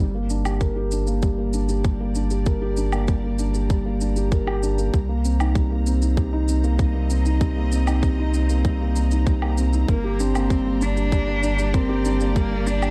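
A soft, thick-felt upright piano riff with delay sits up front in this cinematic, intimate piano and strings electronica excerpt in G minor at 97 BPM, over a round sine sub bass with sidechain pumping, a tight, tape-colored electronic kick, a shaker and woodblock, and a rich bowed string section fading in on sustained chords, before a close sul tasto solo cello with vibrato adds a dark melody at 9.9 seconds, all in a small room, with the kick, shaker and woodblock re-recorded in a large room.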